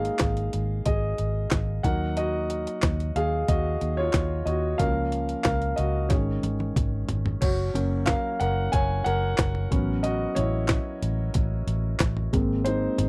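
A dry, close recording with a 1970s studio character and little room sound frames this short cut from a longer piano-driven pop piece, its mood anthemic and hopeful over a straight 4/4 pulse. A concert grand sits up front with a smooth, vintage tone and deep low end, carrying the harmony and stepping forward with solo passages across both halves, from the opening through 13.1 seconds. Beneath it, a muted fingered electric bass gives a dark, round, amped foundation, its foam-muted notes close and present. The drum kit has a sampler-style, compressed grit, pitched up and tape-warm, with a thumpy kick, high-tuned snare, hi-hat, handclaps, toms and crash cymbal. A drum fill from 6.1 to 7.4 seconds carries the music into its second section, where the chords move through Gb and A6 before arriving on Abadd9.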